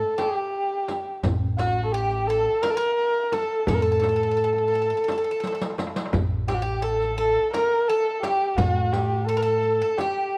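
A dark, nasal kamancheh carries the melancholic melody up front from the start, bowed with vibrato and portamento, while a bright, metallic bouzouki picks a second line on its doubled strings in this hypnotic Turkish makam ensemble piece in 7/8. Darbuka, frame drum and riq join at 0.2 s: the darbuka is deep and saturated in the background, the frame drum close and dry, and the riq's jingles vintage and band-limited. A woody pizzicato upright bass enters up front at 1.2 s, and a drum fill arrives at 5.4 s, all heard through light reverb and the worn, warbling pitch drift of old cassette tape in this passage cut from a longer piece.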